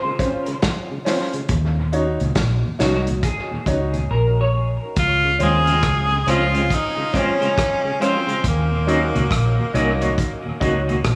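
This is a roots reggae excerpt at a relaxed 69 BPM in 4/4 with a swung sixteenth feel, in Db major, and its mood is uplifting and warm. A semi-hollow electric guitar plays clean, picked and hollow-toned, bathed in lush chorus and tape echo, and it takes a clean solo through the opening section. Beside it, a clear, polished baby grand piano adds stabs, while a mellow tonewheel organ sits dark and round in the background, lightly overdriven with chorus vibrato, a slow rotary speaker and dub echo. A vintage acoustic drum kit, small-room and rolled-off at the top with a tight kick, medium-tuned snare, rim click and hi-hat, carries dub echo and drops out from 4.1 to 5.0 seconds before returning. A foam-muted fingered electric bass enters at 1.5 seconds, round, punchy and up front. At 5.0 seconds an edgy, forceful tenor saxophone takes the melody with vibrato and tape echo, over a Dbmaj7 to Ebm7 progression in an echo-heavy mix with light reverb and studio ambience.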